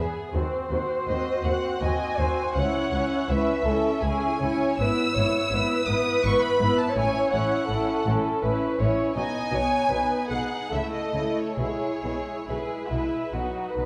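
Dark, woody second violins and soft-attacked violas open this serene, tender slow romantic movement for string orchestra in 3/4 at 66-85 BPM, over smooth, even cellos and lush double basses, before a rich, focused first-violin melody enters up front at 1.1 s, every section bowed with vibrato and shaped with rubato as C# minor gives way to E major from 4.8 s inside a wet recital-hall reverb, the passage cut from a longer piece.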